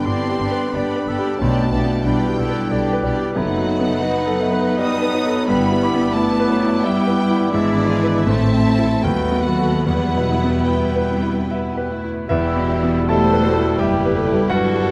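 Brooding and tragic, this excerpt of a classical piece in E minor moves in a rubato 3/4 at roughly 70-93 BPM, its harmony settling from G through B7 and E7 toward E minor. A clear, up-front concert grand piano with deep bass carries the melody alongside a smooth, vibrato-rich violin section. Beneath them sit a mellow cor anglais, a distant clarinet, a second lush violin section, a roomy bassoon, focused violas, very quiet French horns holding chords, and bowed cellos and double basses, with a pure, soft-edged flute ensemble joining at 12.3 seconds, all in light reverb.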